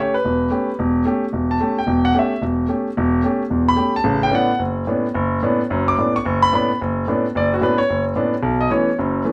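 A concert grand piano carries this brief jazz excerpt on its own, heard up front with an intimate, polished tone, audible action noise and long sustain. The mood is searching and hypnotic, set at a brisk 220 BPM in 4/4 with a swung eighth-note feel at 61%. The piano spans from a deep bass at E1 up to D6. The harmony moves from A7 to Bmadd9 at 4.1 seconds, arriving on B9sus4 at 8.4 seconds before the piano stops at 9.3 seconds. Moderate studio reverb gives the sound the air of a live room, with the instrument tuned to A4 = 442 Hz.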